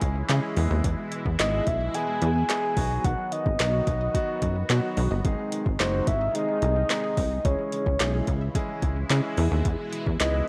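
Bittersweet and driving, this dance-pop excerpt in C# minor moves at 109 BPM in a straight 4/4 as a warm concert grand piano opens with a brief fill before settling into sidechain-pumped accompaniment alongside a punchy, funky analog bass and a detuned, resonant sawtooth pad sweeping in the background with chorus, while a lush, very quiet unison pluck spins arpeggios and a smooth R&B drum kit with a soft kick, woody snare, metallic hats and handclaps sits up front, until a round, dark octave-layered synth lead with vibrato, chorus and tape echo carries the melody from 1.4 seconds over the C#m, E, B and G# changes in a light reverb.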